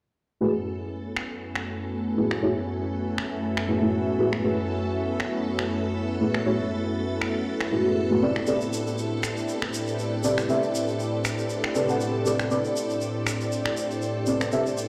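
Heard through a moderate plate reverb and played back on a big sound system in a bare stone room, this late-night, smooth deep house fragment sits at 119 BPM in F# minor with a swung 16th-note feel, moving from F#m11 to Am11 at 8.2 s. Up front, a dark, soft chord stab with a sub octave, fast attack and decaying tail carries chorus, phaser and dub echo, while a smooth, warbling vintage analog pad holds detuned sustained chords with 12-bit sampler grit. An ethereal, airy pad with a noise layer, a shimmering, bright string-machine violin texture, electronic finger snaps with a low-passed snare, and a grainy, close tube shaker that enters at 8.5 s fill out the texture.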